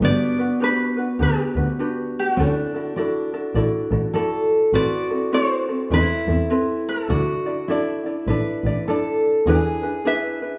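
A lazy swung eighth-note lilt carries this relaxed, sunny Hawaiian piece, where a bright fingerpicked ukulele sings the melody up front over a second thumb-plucked ukulele accompaniment and a full-bodied fingerpicked steel-string dreadnought guitar adding a second line with audible finger squeak, while a dark bowed double bass glides with expressive vibrato and portamento beneath until 9.5 seconds, all set in light studio reverb over chords moving from Gmaj7 through Dadd9, Amadd9 and Dsus2 to a closing E7.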